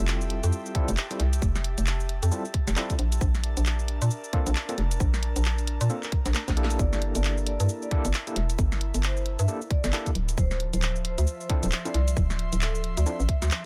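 UK garage two-step excerpt at 134 BPM in G dorian with a soulful, late-night swing, where barky, overdriven tine electric piano stabs with fast tremolo, dub echo and a filter sweep ride over a hollow, bouncy FM bass and an airy, detuned pad, both pumping to the sidechain, while a tight, up-front electronic kick and a garage kit of cracking snare, handclaps, shaker and warm hats drive the groove through a drum fill at 6.3 seconds before a ringing vibraphone with gritty 12-bit sampler texture enters in the background at 6.8 seconds, all set in digital ambience.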